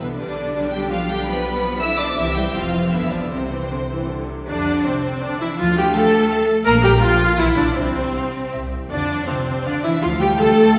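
The viola section sits up front in this quick classical-period movement for string orchestra, carrying the accompaniment with a rich, expressive tone shaped by vibrato and portamento. Above it, a violin section sings the melody with a smooth, even sound, while a second violin section adds a focused, lush line. A cello section bowed with vibrato and a distant double bass section with light vibrato share the bass. At 150-170 BPM in 3/4 with a rubato feel, the music is graceful and spirited, opening in C major before moving to F major at 4.5 s. The double basses drop out at 10.3 s, just before the other strings stop at 10.8 s, and a wet concert hall reverb with an RT60 of 1.8 s surrounds this passage cut from a longer piece.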